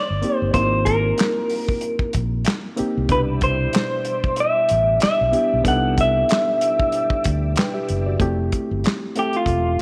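A slightly broken-up, lo-fi electric guitar melody with slapback echo opens over a reedy, lightly overdriven electric piano, joined at once by a round, punchy fretless bass and an acoustic soul drum kit of handclaps, hi-hat, tight kick and snare in this smooth, soulful neo-soul R&B piece at 94 BPM with a gentle sixteenth-note swing in F major, while a clean tonewheel organ through a fast rotary speaker sits in the background from 3.1 to 8.2 seconds before the guitar turns to a clean solo at 8.2 seconds, set in a small room with light reverb.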